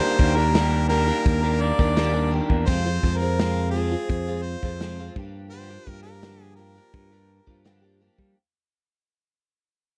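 A clear, close-miked harmonica carries the melody from the first moment, touched with light vibrato and a slapback echo, while a shimmering, octave-doubled twelve-string acoustic guitar is picked underneath and a twangy, slightly broken-up electric guitar through a small old amp plays a lo-fi riff that stops at 2.7 seconds. This short folk rock and heartland rock passage, cut from a longer piece, moves at a straight 84 BPM in 4/4 and feels wistful and dusty. A growly, up-front electric bass and a natural country drum kit with a punchy kick, medium-tuned snare and hi-hat come in at 0.2 seconds. The harmony moves from Ebmaj7 to Fm and then Gm7. The dry, close 1970s-style studio sound keeps the parts intimate, and the whole clip sits inside a fade-out.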